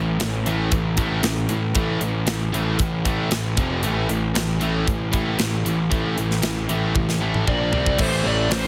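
Heavily compressed with a radio-like sheen and light small-room reverb, this heavy, driving hard rock excerpt at 116 BPM in A minor sets an overdriven semi-hollow guitar and a scooped high-gain guitar on a background riff over a growly fuzz bass and a polished, up-front metal drum kit with bright cymbals and a tight kick that enters at 0.2 s and plays a fill at 7.0 s, before a biting lead guitar arrives at 7.5 s and a very quiet double-tracked distorted guitar joins the riff.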